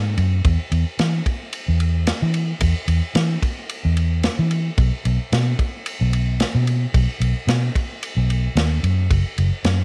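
A dark, round, foam-muted electric bass opens this rollicking, swaggering soul-blues excerpt up front, joined at 0.2 s by a roomy, rolled-off drum kit with a tight kick, medium-tuned snare and dusky ride cymbal, set in light reverb over a straight-eighth groove with a gentle swing.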